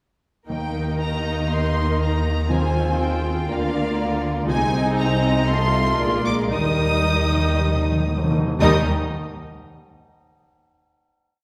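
In a straight four-beat pulse, this brief, cheerful classical-period piece for symphony orchestra opens at 0.5 seconds with a focused chamber violin section carrying the bowed melody over a second violin line with tremolo, a lush viola section, mellow French horns sounding chords in the rhythm of the tune, a smooth background cello section and an up-front, soft-attacked double bass doubling the bass line, while round soft-mallet timpani strike single strokes on bass notes, pause and return with a fill from 6.5 seconds before a final chord rings into the reverberant scoring-stage space.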